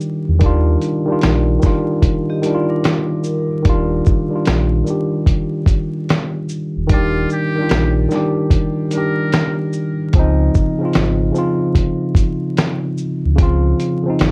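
Cosy and mellow, this lo-fi hip hop excerpt sits at 74 BPM in 4/4 with a 16th-note swing, in Eb major, resting on Ebmaj9 before moving to Dbmaj9 at 10.1 seconds. A worn, slightly out-of-tune tine electric piano carries the chords up front, its clean tone coming through a combo amp and softened by a low-pass filter and plate reverb. A gritty, compressed, tape-warm sampler-style drum kit, re-recorded in a small room, pairs a thumpy kick and fat snare with hi-hat and shaker, while a deep, full sine sub bass with an added octave holds sustained low notes. At 2.3 seconds a metallic, ringing vibraphone struck with hard mallets, carrying slow motor vibrato, drifts briefly in the background through tape echo and plate reverb. From 6.9 seconds a buzzy, thin trumpet with a metal mute plays a short jazz-style solo with light vibrato and a soft attack, filtered and echoed on tape. The production is dark and warm, with light reverb and a bed of vinyl crackle.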